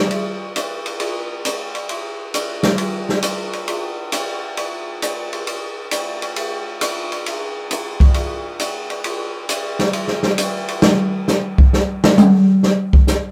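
An open acoustic jazz drum kit carries this playful swing groove at 134 BPM. Its hi-hat, ride, snare, kick and toms come through with dark cymbals, a medium-tuned snare and a boomy kick. From 10.8 seconds the kit takes a short solo that runs to the end of this cut from a longer piece. The drums sit up front and natural, framed by a moderate club reverb that places the listener a little further back in a small room.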